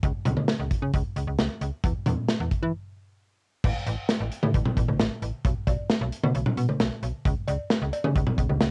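Wistful yet upbeat, this short synth-pop fragment, cut from a longer piece, moves in a straight 4/4 feel. A slap-like FM bass sits up front with a snappy, metallic attack and a digital, quickly decaying tone, spanning A1 to E3. Beside it, an acoustic studio drum kit sounds dark and smooth, as if in a small room, with a rolled-off top, a tight kick, a medium-tuned snare, hi-hat, toms, crash cymbal and cowbell; the kit alone carries a cassette tape colouring. Both parts play throughout, with a break from 2.7 to 3.6 s, after which a new section begins and runs to the end at 8.7 s. The whole thing has the intimate feel of a home recording on cassette, with a light reverb around it.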